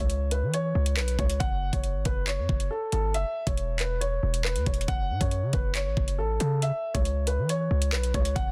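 A dark, mellow grand piano with delay and long sustain opens this tense drill hip hop fragment at 138 BPM in a half-time feel, alongside a punchy sine 808-style bass with a noise layer and fast attack, and at 0.1 seconds an overdriven electronic drill kit joins with knocking kick, metallic hi-hats and handclaps, all moving through C#m, F#5, C#m7/E and F#m in a dry, dense, heavily limited mix.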